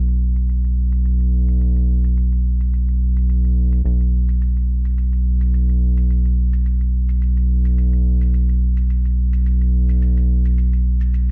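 The rhythm sits in 4/4 at 107 BPM, with a light 54% swing on the sixteenths that gives this organic downtempo excerpt an easy, loping feel. A round analog bass carries the piece from the start through 11.3 seconds, sitting up front with a deep, mellow tone that blends square and sine waves with a wave-folded edge. Its notes have a fast attack and a sustained body, reaching down to B1, and its character evolves as it plays. An electronic, layered shaker enters at 0.1 seconds and stays in the background, softened by a low-pass filter and set in a studio reverb. The overall sound is dry yet bright, with a 1980s-style digital production sheen, tuned to A4 = 435 Hz, and the mood is earthy and warm.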